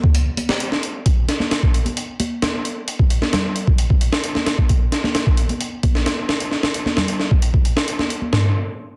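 Funky and swaggering, this short breakbeat excerpt is driven by a gritty, compressed, pitched-up sampler-style drum kit sitting up front, with a thumpy kick, high-tuned snare, hi-hat and toms that carry the sound of being re-recorded in a large room. From 0.4 seconds, high-tuned acoustic congas ring softly in the background, close and dry under soft hands. A drop and break open the first second before the main groove settles in at 1.1 seconds, all under light reverb and a dense, heavily limited modern master.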